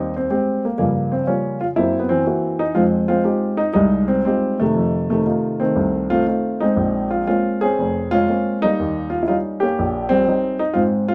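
A warm baby grand piano plays alone, setting out a sophisticated solo jazz passage that lasts just over 11 seconds, a fragment of a longer piece. The playing carries a swung eighth-note lilt, loosened by rubato. The harmony moves from Abmaj7 through Gm7b5 and Gb7#11 to Fm9, then lingers on F7 and Bbm9 before resting on Eb7. The piano spans from deep in the bass at F1 up to Ab4, and its tone is intimate and natural, with short sustain and the clatter of the action clearly audible. Placed up front in a single room with light reverb, the performance has a close, warm feel.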